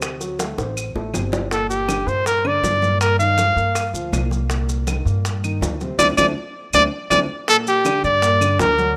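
A straight, danceable salsa groove in 4/4 comes from tight, high-tuned bongos, woody claves, grainy maracas and bright, damped congas sitting in the background, over a pizzicato upright bass with steel strings and a dark, boxy baby grand piano with audible action noise, while a clear, punchy trumpet enters up front at 1.5 s with scooped notes and a smooth top to carry a passionate melody, the band landing an accent at 6.0 s in this rough home demo cut from a longer piece, set in a small room with light reverb.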